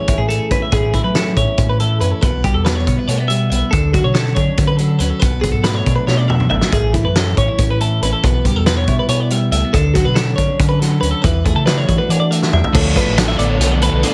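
Moving in a straight 7/8 at 280 BPM in eighths, this wistful, bright excerpt of math rock and midwest emo in A major sets two clean, twangy twelve-string electric guitars, one picking accompaniment and one picking bright arpeggios, over a round, dark fingered bass and an up-front loose indie kit with a fat snare, punchy kick and dark cymbals, cycling through Amaj7, G6/B, Dmaj7 and Bm7, then Amaj7, G6/B, Dmaj7 and E9sus4, with drum fills at 6.1 and 12.4 seconds before an overdriven, double-tracked semi-hollow guitar riff with spring reverb enters on a Dm6 at 12.7 seconds, all in a light reverb.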